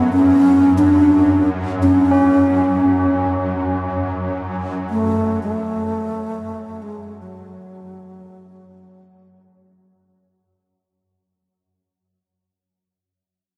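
A breathy bass flute sits up front with vibrato and a crisp attack, carrying the melody through a diffuse ambient delay until 9.9 seconds in this meditative, haunting world meditation music. Beneath it, a detuned, ethereal pad holds a drone with an octave-up shimmer, chorus and its own reverb, while solemn tubular bells struck with a rawhide hammer sound dry and metallic. The dark production is bathed in huge ambient reverb, carries lossy compression artefacts, and fades out across the full 11.1 seconds of this fragment cut from a longer piece.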